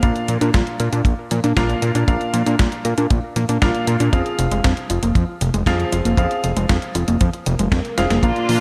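A fat, detuned sawtooth analog bass sits up front in this melodramatic, nostalgic italo disco excerpt, alongside a dry, tight acoustic kick, an overdriven 12-bit drum machine on hi-hat and snare, warbly lo-fi plucked arpeggios with chorus and delay, and clear, worn baby grand piano stabs with audible action noise and delay, before a very quiet electronic swell at 7.4 s, a drum fill at 8.0 s and bright, lush bowed strings holding chords from 8.2 s, set in light small-room ambience.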